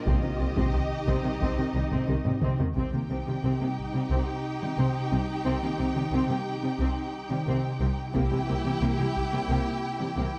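A taiko ensemble struck with hard sticks punctuates this brooding, futuristic stretch of hybrid orchestral and electronic film score, its acoustic, vintage, band-limited sound dropping out at 4.1 seconds and returning at 8.2 seconds, just as the minor harmony turns to a dominant seventh. Beneath it, a rich, distant double bass section, smooth and even, and a cello section set in the background hold a low bowed foundation with vibrato. A viola section fills the middle with expressive, portamento-inflected accompaniment, while a lush violin section carries a soft-attacked second line with a smooth top. Woven through the strings, a mellow, harp-like synth pluck plays ringing arpeggios with a fast attack, filter sweep and long decaying release, coloured by chorus and delay. The moderate concert hall reverb surrounds close, detailed microphones, giving this excerpt from a longer piece a spacious yet intimate sound.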